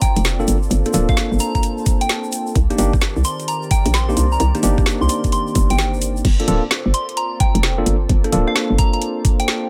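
A hollow, bouncy FM bass knocks up front from 0.2 seconds, paired with a layered, produced electronic kick in this moody, soulful two-step garage excerpt at 130 BPM in G minor, swung on the sixteenths. The garage kit adds a woody snare, metallic hi-hats, rim clicks and crash cymbal, while a grainy, bright tube shaker sits in the background until 6.2 seconds. A worn, slightly out-of-tune tine electric piano plays low-pass filtered stabs that carry a filter sweep through the opening, and a soft, pure FM synth bell carries the melody high above with chorus and phaser. Underneath, a mellow analog pad holds sustained chords, and a deep, dark ambient pad adds a reverberant texture; both pads warble and pump with the sidechain. The harmony moves between Gm7 and Cm7, and at 6.2 seconds the track drops into its second part within a digital ambience.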